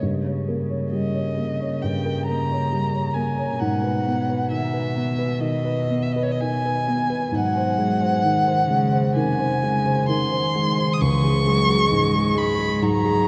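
Classical romantic piano trio, melancholic and yearning with a rubato feel, in which an up-front, woody violin sings the melody sul tasto with vibrato, a close, intimate cello plays a soft-attacked second line with light vibrato, and a mellow, vintage-toned concert grand with deep bass and short sustain supplies the accompaniment, all three sounding dark and bathed in a vast cathedral reverb across this 13.3-second fragment of a longer piece.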